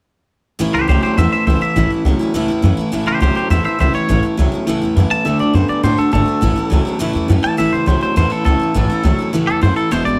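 Rockabilly, upbeat and rowdy, in A major at a brisk 206 BPM in straight 4/4, this short cut from a longer piece moves from A to D at 5.3 seconds and back to A at 6.4 seconds. A woody, thumpy upright bass sits up front with a picked riff from an electric guitar through a small old amp that sounds slightly broken-up, while a jumbo steel-string acoustic with fresh strings and audible finger squeak fills out the accompaniment. From 0.7 seconds a clean, compressed lead guitar carries the twangy melody up front, trailed by tape echo, all within a small room's reverb.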